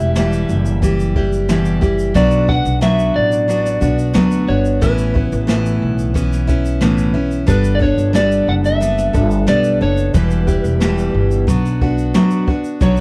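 A picked dreadnought acoustic guitar, full-bodied and up front, opens this wistful, reflective acoustic pop piece in B minor at 90 BPM alongside a woody pizzicato upright bass, while a slightly broken-up electric slide guitar carries the melody in a high register. A jazz brush drum kit joins at 0.2 seconds with a boomy kick, shaker and medium-tuned snare, sounding distant and roomy with a rolled-off top. The chords move through Em, Bm, Aadd9 and Gadd9 before returning to Em and Bm, in a dry, warm sound that is cut from a longer piece.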